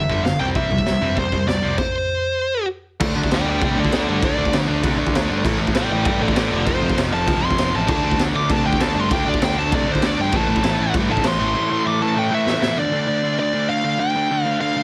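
Urgent and raw, this punk rock passage is cut from a longer piece and drives hard in a straight four. A dark, high-gain lead guitar sits up front, and after a brief stop it launches into a solo at 3.0 seconds. Beneath it, a bright overdriven electric guitar and a sludgy distorted guitar play riffs in the background, joined by a round, punchy fuzz bass. At 7.9 seconds a second overdriven guitar, double-tracked and very quiet, adds another riff layer. The raw garage drum kit is gritty and up front, with a high-tuned snare, boomy kick, crash and toms in a small, pumping room, and it closes the solo with a fill at 12.5 seconds. Light reverb and a heavily compressed, radio-like sound give the whole mix a squeezed edge.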